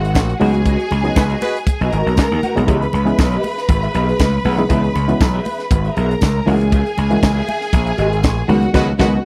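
A danceable, driving disco excerpt opens with a tight, up-front funk drum kit and a gritty, overdriven slap bass beneath a lush bowed string section and a dark, chorused electric guitar; a muted, stringy clav joins at 0.4 seconds, very quiet high-tuned congas play along while a jingly tambourine sits in the background, and a warm horn section adds short stabs at 1.2 and 8.7 seconds, all within a dry, close 1970s-style studio sound.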